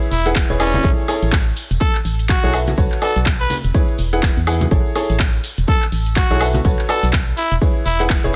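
A dry, close-sounding mix opens this feel-good, uplifting piano house excerpt at 124 BPM in A major, with a swung sixteenth-note feel and chords moving through E7, Amaj7, Bm7 and E. A clear, woody, slightly detuned upright piano riff pumps against the sidechain and trails a delay, while a hollow, dark, organ-like FM bass with a fast, decaying attack sits up front beside a punchy, layered electronic kick that enters at 0.4 seconds. Handclaps, hi-hat and woodblock from a produced house kit, with ringing hand-played tambourine and congas in the background, support a raspy, growling solo trumpet whose brilliant, vibrato-laden lead uses scooped notes and its own delay.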